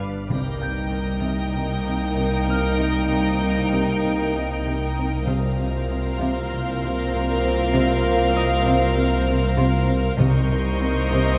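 A straight 4/4 pulse at 97 BPM carries this mysterious, eerie suspense-film cue in C minor, with soft, round timpani strokes at 0.3, 5.3 and 10.2 seconds marking the chords' move from Cm7 to Bbsus2/C and back to Cm7, while a dark double bass section and a cello bass line hold a low C beneath a nasal, evolving analog drone, a cello riff and an intimate viola section sit under a sul tasto violin melody and a floating second violin line, and a high violin texture, a ringing harp in the background, a distant, very quiet French horn section and a detuned, organ-like pad with ensemble chorus and built-in reverb fill out a moderately reverberant scoring-stage sound.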